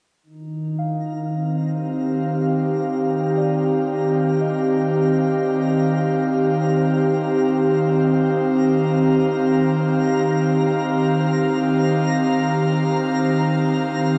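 Ambient in free time and Eb major, this peaceful, luminous excerpt centres on an airy, breathy pad holding sustained chords up front with chorus from 0.4 seconds, joined by very quiet muted, felt-like synth keys playing soft arpeggios from 0.8 seconds and a twinkling granular texture with its own reverb that fades in from 1.0 seconds, all bathed in a long shimmer reverb within a dark production.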